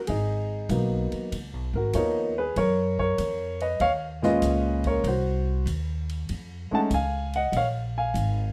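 Light reverb surrounds this short jazz piano trio recording, with the piano and upright bass up front and the drum kit set distant and roomy behind them. The mood is moody and late-night, moving at 96 BPM in 4/4 with a swing feel on the eighth notes. A warm, natural-sounding baby grand piano carries the melody across a range from Bb2 to A5, while the pizzicato upright bass, woody and growly with steel strings and a thumpy attack, holds down the low end between Ab1 and Gb2. The big-band drum kit swings softly in the background on hi-hat, ride cymbal, a medium-tuned snare and a boomy kick. The harmony moves from Abm7 through Db13 to Gbmaj7, then passes through Cdim and Fm7b13 toward a Bb7 with its third omitted at 7.5 seconds, and the clip ends at 8.5 seconds as a fragment of a longer piece.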